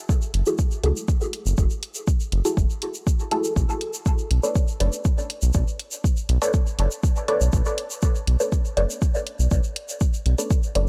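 A dry, gritty hardware recording of hazy, nocturnal dub techno at 121 BPM, this fragment of a longer piece sets a deep, tape-warm electronic kick drum up front beneath a round analog bass with tube saturation and sidechain pumping, an overdriven electronic hi-hat, a grainy tube shaker heard close, and a muted, detuned filtered dub chord stab treated with phaser, dub echo and pumping as the harmony moves from F#m9 to Bm9 at 3.6 seconds.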